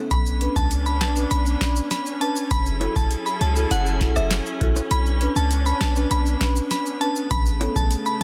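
Dancehall with a bouncy, sultry feel, built on a booming analog drum machine with a deep kick, crisp snare, handclaps, metallic hats and rim clicks, a deep, boomy 808-style bass up front, and a bright, close tube shaker with timbales. A glassy, crystalline FM bell carries the melody through chorus and tape echo, while woody rosewood marimba enters at 0.4 seconds and lush bowed symphonic strings hold sustained chords that pump under sidechain. The kick drops out briefly from 4.9 to 5.5 seconds in this short cut, which sits in a small room with a dense, heavily limited modern master.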